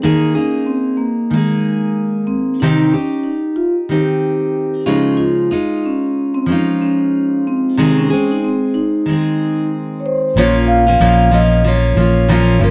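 Acoustic pop with a carefree, easy-going mood at 93 BPM in 4/4 with a light sixteenth-note swing, where a mellow, ringing vibraphone played with soft mallets carries the melody over a woody, full-bodied fingerpicked steel-string acoustic guitar through chords from Ebsus4 to Cm, Dbadd9 and Ab/C, until a dark, round electric bass enters at 10.4 seconds on Bbm, all captured in a dry, close 1970s-style studio sound cut from a longer piece.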